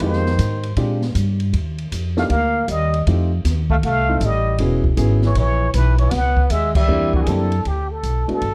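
Small-group swing and bop jazz with a sophisticated, warm mood, taken from a longer piece and driven by a swung feel. A plunger-muted trumpet carries the melody up front, its wah-wah voice colored with vibrato and scooped pitches. Beneath it, a bright, punchy trombone plays a forceful second line with its own scoops, dropping out at 7.5 seconds. A concert grand supplies intimate accompaniment with deep bass and audible action noise, while a woody pizzicato upright bass sits prominently in the mix. An open acoustic drum kit with dark cymbals, a high-tuned snare and a boomy kick keeps time in a natural studio room, and the whole band hits a shared accent at 6.7 seconds, all within a dark production touched by light reverb.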